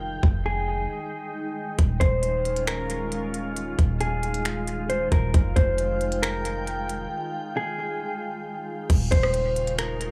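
A mellow, dark electric guitar carries the melody up front from 0.5 seconds, its clean, compressed tone softened by a low-pass filter and trailed by analog delay over a glassy FM pad that sustains Fm9 and Eb9sus4 chords with ensemble chorus, built-in reverb and sidechain pumping. This melancholic, ethereal cloud-rap excerpt moves at 135 BPM in a half-time 4/4 feel in F minor, anchored by a deep, boomy 808-style bass with a sine body and noise layer, and a produced trap kit of hard-clipped kick, crisp hi-hats, finger snaps, rim clicks and crash cymbal. The echo-heavy mix keeps a small room ambience, with breaks from 0.0 to 1.8 seconds and 7.1 to 8.9 seconds before a new section arrives at 8.9 seconds.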